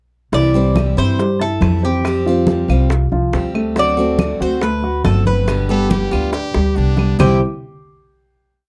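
A bright, metallic Cuban tres carries the melody from the start, its doubled strings picked through motif-based phrases over a relaxed, danceable Cuban son in the guajira style at 140 BPM in C major. Up front, a growly pizzicato upright bass plays a tumbao that anticipates the chords, while a dark, mellow grand piano plays a montuno in octaves with long sustain and audible action noise. A full-bodied dreadnought steel-string guitar strums with muted slaps, and in the background congas with slaps and open strokes, low-tuned bongos in steady eighths with a hand bell, and woody claves keeping a two-bar time line fill out the groove. At 5.7 seconds a brilliant, punchy trumpet enters with vibrato and scooped notes, answering in the melody's rests just before a drum fill leads into a final C chord at 7.2 seconds. The dry, close recording has a 1970s studio character, with a faint mains hum underneath.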